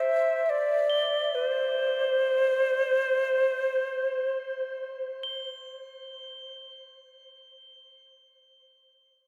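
World meditative music in free time, calm and spacious, with a breathy, woody cedar flute carrying an up-front melody with vibrato and a soft attack through shimmer reverb and diffuse ambient delay until 4.9 seconds, while quiet, bell-like crotales ring high and mellow beneath it, sounding on alone until 8.5 seconds, all set in a vast, echoing cathedral space in this excerpt from a longer piece.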